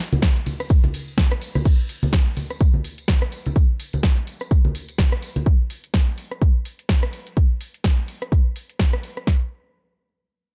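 House groove at 126 BPM in 4/4 with a 16th-note swing, feel-good and euphoric, opening on a drop and cut from a longer piece. An up-front electronic drum kit with a punchy kick and snare drives it from 0.2 to 9.4 seconds, layered with a quieter second kit of cabasa, crash, hi-hat, ride, rim click and snare, while hard-hand congas and tambourine with an acoustic, small-room feel play only until 5.4 seconds. The production is dark and dry, with little reverb.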